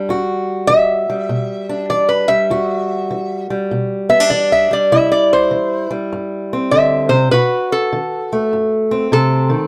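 This acoustic country blues piece, cut from a longer performance, moves at a swung 100 BPM in 4/4 and sits in E minor with a soulful, mournful feel. A fingerpicked acoustic archtop guitar provides the accompaniment from the first moment, its boxy tone sitting up front with audible finger squeak as it ranges from low E2 up to F#4. At 0.7 seconds a lap resonator guitar enters with the melody, played with fingerpicks and a steel bar, and its metallic, nasal slide tone rides slightly louder than the archtop in a high register between A4 and E5. The resonator carries a solo through the whole passage over a harmony that moves from Em9 to C at 4.9 seconds and on to B7b9 at 7.3 seconds. The sound is dry and close, with a light reverb and the intimate character of a 1970s-style studio recording.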